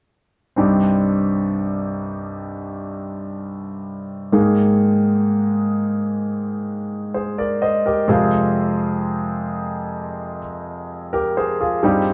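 Heartbroken and emotional, this short pop excerpt in C minor moves at a slow 64 BPM in a straight 4/4, cut from a longer piece. A clear concert grand piano carries the accompaniment from 0.6 to 12.1 seconds, intimate and up front with deep bass, long sustain and audible action noise, moving through Cmadd9, Absus2 and Fm. The room adds a wet studio reverb, giving the sound the feel of a band playing live together.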